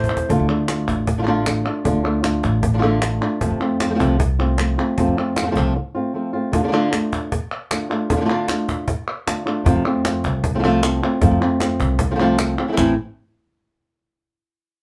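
A cajon fill opens this dramatic, intense flamenco excerpt at 154 BPM, as an up-front, dark and boxy thumb-plucked guitar carries the melody over Dm and F chords, with finger squeaks audible. A pizzicato upright bass with steel strings adds a warm low line, dropping out around a short break at 5.8 seconds and returning at 9.7 seconds, while the hard-handed, woody cajon with faint snares and crisp palmas mark the straight 4/4 pulse. The band plays live in one room with moderate studio ambience, moving into a chordless passage from 12.8 seconds.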